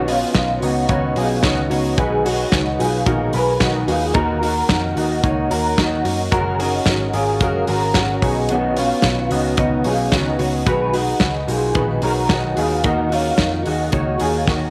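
Lightly reverberant studio ambience frames this excerpt of nostalgic, breezy jangly indie pop at 110 BPM in 4/4, moving through Badd9, G#m7/B, D#m and F#add9. A bright, twangy electric guitar through a small old amp plays slightly broken-up picked arpeggios bathed in ensemble chorus and tape echo, over a full-bodied fingerpicked jumbo acoustic guitar and mellow, detuned analog keys with chorus that sit in the background and add a brief fill at 1.2 seconds. Underneath, a dark, round, foam-muted picked bass and an up-front studio kit with a fat snare and punchy kick drive the groove, capped by a drum fill at 14.5 seconds.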